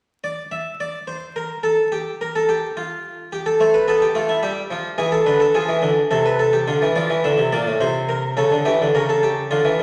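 Classical in a baroque style, this two-part invention for solo harpsichord moves at 107 BPM in 3/4, with a solemn yet driving character drawn from a longer piece. The harpsichord sits up front with a brilliant, airy, Italian-style plucked tone and octave strings, spanning A2 to E5 and moving through Am, Fsus2, E7, Dm and Bbsus2/C before closing on A7/C# at 8.4 seconds. A moderate scoring-stage reverb gives the sound space, while a vinyl crackle adds an aged patina.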